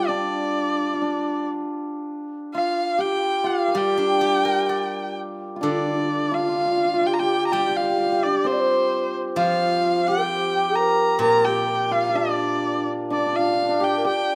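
Tender and wistful, this short cut from a longer Chinese chamber ensemble piece drifts at a rubato 65 BPM in 2/4, centred on a G yu mode. A rich, smooth erhu carries the melody up front, its bowed line shaded with vibrato and portamento and staying even across its range from C5 to Bb5. Behind it, a low bamboo xiao adds a breathy, hollow second line, tongued and touched with vibrato, sitting distant in the background. The hammered dulcimer shares that second line from up front, its bright, shimmering tone ringing out, while a steel-string zither played with fingerpicks supplies silvery accompaniment that reaches down to Bb2 and stops just before the others at 14.0 seconds. A moderate recital hall reverb gathers the ensemble as the music moves from its opening section into a second one at 5.6 seconds.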